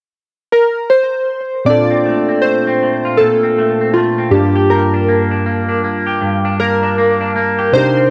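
A glossy, pulse-width-modulated retro synth lead with analog chorus, analog delay and cassette tape color opens at 0.5 s, joined by round analog keys at 1.6 s and a bright, twangy clean electric guitar in lush chorus and vibrato at 1.7 s as the harmony moves from Bbmaj9 to Gm7, giving this sunny, hazy indie pop excerpt at 79 BPM a lightly swung 4/4 feel within a small, home-recorded booth ambience.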